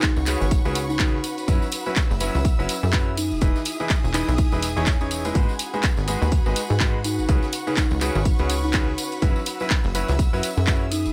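A swung 4/4 groove drives this soulful, bittersweet piano house, built on a punchy, up-front electronic kick, tape-warm house-kit handclaps and hi-hat, a very quiet, gritty sampler-style breakbeat kit with hi-hat and snare, and a close, dry tambourine. A funky analog bass with a fast filter pluck and a clear, intimate baby grand piano riff, its action noise audible, both pump with the sidechain, while a buzzing, woody kalimba carries the melody. In the background, a rich chamber violin section holds sustained chords with vibrato, and an airy, breathy pad with chorus joins the bass at 0.2 s, over C#7sus4, F#7sus4, Emaj7 and G#m7 in a dry mix cut from a longer piece.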